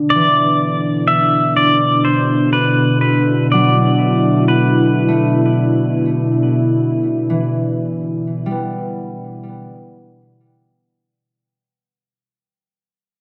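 Serene and unhurried, this ambient passage in a gentle three-beat metre is cut from a longer piece. A smooth, vintage analog pad sits up front with detuned sawtooth and triangle tones, a soft attack and long release, and a subtle warbling chorus as it holds a sustained G6 chord. A clean electric pedal steel guitar, played with fingerpicks and slide and compressed, carries the melody with volume swells and delay until it drops away at 5.4 seconds. Beneath it, a ringing acoustic concert harp plays quiet fingerpicked arpeggios in a low register, trailed by its own delay. The dark, warm production is bathed in a wet concert hall reverb, and the whole passage fades out from 7.4 seconds.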